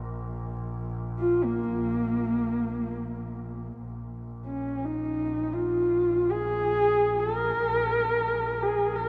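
Mongolian folk in free time and a Bb yu mode, this solemn, windswept fragment opens with a rich, focused bowed double bass holding a low Bb drone from a distance, its tone carrying vibrato. At 1.2 s a dark, husky horsehead fiddle enters up front with the melody, its woody bowed horsehair strings sounding smooth on top as vibrato and portamento shape each phrase between Bb3 and Bb4. Both instruments sit in a vast, echoing cathedral reverb that lingers for seconds, with the sound's upper edge softened.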